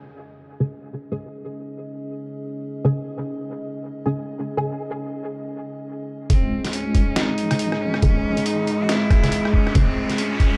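A half-time 139 BPM groove with 16th-note swing drives this dark, cavernous deep dubstep fragment, though the beat only arrives at 6.3 s: a gritty, pitched-down kick sits up front beside a compressed, sampler-style trip hop kit of hi-hat, rim click and medium-tuned snare. Before that, a moody, detuned analog pad and muted, plucky dub chord stabs with echo open under filter sweeps, then a bright, intense bowed cello melody with light vibrato enters alongside a soft, wobbling sine-and-triangle bass kept in the background. A background electronic riser from 7.4 s feeds the build-up inside a dark, warm production with light digital ambience.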